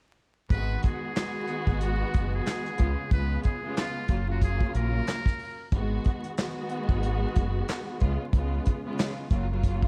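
Moody, reflective boom-bap hip-hop at 92 BPM in G# dorian, swung on the 16ths and cycling through G#m7, C#7 and F#maj7 in this short excerpt. A muted trumpet with a metal mute plays a breathy, buzzy jazz-style solo melody with light vibrato and scooped notes, touched by slapback echo, from 0.5 to 5.7 seconds. Bowed studio strings with portamento and a cassette-tape tint accompany it, alongside a round, punchy, dark fingered electric bass and an up-front brushed drum kit with tight kick, hi-hat and handclaps, all set in a small room with vinyl crackle.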